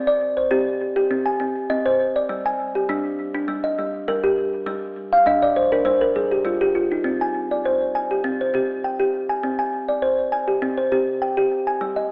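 Hypnotic and meditative, this short passage of world-flavoured tuned percussion moves at 101 BPM in a straight 4/4, centred on C minor. A lone kalimba carries the whole piece, its woody, thumbnail-plucked notes short and close-miked, sitting full and up front while reaching from G3 to Ab5. Tape echo trails each pluck, and a wet echo chamber reverb with a small room ambience surrounds the sound, all filtered through a thin, telephone-like tone. The harmony moves from C minor to G minor, and a kalimba fill from 5.1 to 7.1 seconds leads into a second section that settles on a bare C5 chord. The recording is cut from a longer piece and runs to 12.1 seconds.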